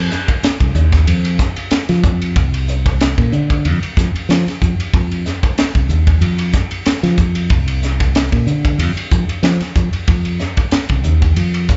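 A growly fingered electric bass opens this nocturnal, funky slice of electric jazz fusion and is joined almost at once by a crisp, gritty acoustic drum kit with a high-tuned snare, tight kick, bright cymbals on hi-hat and ride, and a pumping small-room sound, both parts up front over a lightly swung 16th-note feel, heard as a live club gig through the venue's PA with a touch of reverb and muffled highs.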